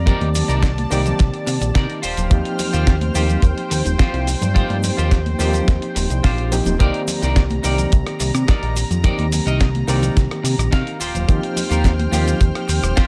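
A small-room ambience surrounds this sensual, cosmic nu-disco excerpt at 107 BPM in C dorian, where an up-front, tight dry kick and a gritty, tape-toned sampler-style kit of hi-hat, rim click, shaker and snare play alongside a fat sawtooth-and-square analog bass with a moving notch filter, while a reedy overdriven electric piano with fast tremolo, delay and a filter sweep, a lush detuned unison pad with chorus and sidechain pumping, a clean picked semi-hollow guitar riff and soft-handed cabasa, congas and bongos in the background circle the Cm9 and Eb69 chords.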